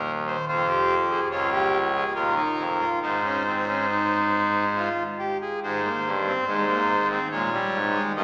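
In a straight 3/4 at 71 BPM, this driving, serious excerpt of a baroque-style three-part fugue in Ab major, tuned to A4 = 436 Hz, features a solo pipe organ on a brassy, bright trumpet stop with romantic voicing, placed up front and spanning Db1 to Eb5 through chords such as Fm, Db, Ab and Bbm7, shifting to a new section at 5.6 s, all heard from further back in a wet concert hall with a 2.4-second reverb and a small-speaker sound.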